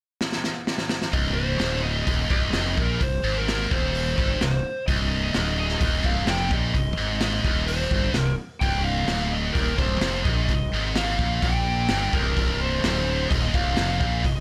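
A driving 4/4 pulse at 128 BPM sets up this aggressive hard rock passage in C minor, cut from a longer piece and tuned slightly sharp to A4 = 442 Hz. A raw garage drum kit opens with a fill at 0.2 seconds, its punchy kick, medium-tuned snare and hi-hat sounding gritty and saturated, with a rolled-off top and a pumping small-room character. At 1.1 seconds the band crashes in on a C minor chord. A heavy, double-tracked high-gain guitar pounds out a bright, distorted, picked riff low in its range, and a fuzz-laden fingered electric bass sits beneath it, punchy and overdriven. Above them, a dark lead guitar through a small cranked amp carries the melody between Bb4 and G5, its overdrive trailed by a slapback echo. The drums, riff guitar and bass all sit up front, with the compact ambience of a small room surrounding the kit.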